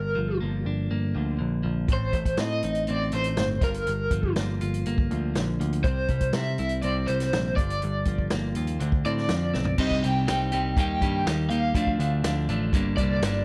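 A dry, close 1970s-style studio sound frames this bittersweet, cool indie rock excerpt in G minor at 122 BPM, where an overdriven semi-hollow guitar carries the melody through tremolo and tape echo over a crunchy overdriven guitar riff, a faint, twangy twelve-string electric guitar, and a round, dark picked bass with transformer saturation, while a punchy vintage drum kit enters at 1.9 seconds and plays a fill at 9.5 seconds before the chords shift toward Cm7 and Eb.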